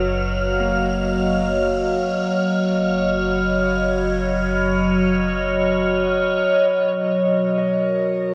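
Bathed in a huge ambient reverb and the warbling pitch drift of worn cassette tape, this weightless, luminous ambient passage in free time is cut from a longer piece. A bright, morphing wavetable pad sits up front with phaser and shimmer, holding sustained chords that move from G#sus2/F# to Badd9/F# and open onto Bmaj9 as a filter sweep passes over it from 6.7 seconds. Around it, a chorused analog drone, an airy wind-like noise texture and an ominous, rumbling bass drone that ends at 6.6 seconds frame a dark, slightly broken-up electric guitar through a small old amp, which enters at 0.6 seconds with lo-fi, tape-echoed arpeggios deep in the background.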